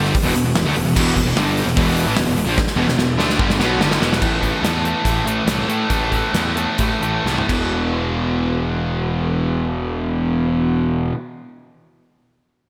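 This heavy, driving hard rock excerpt in E minor runs in a straight 4/4 between 122 and 148 BPM, cut from a longer piece. Up front, a bright, scooped, compressed electric guitar grinds out a distorted riff, backed by a dark, sludgy overdriven guitar and a double-tracked overdriven guitar that drops away at 4.2 s. A growly fuzz bass, direct and amped, sits forward in the mix, while a gated 1980s kit with a punchy kick, medium-tuned snare, toms, hi-hat and bright crash cymbals thunders in a stone-like room and adds drum fills. The harmony moves from E minor to A5 and lands back on E5 as the tempo slows from 4.2 s, and the drums fall silent at 7.6 s, leaving the guitars and bass. A lush hall reverb and bright digital production recall a polished 1980s sound.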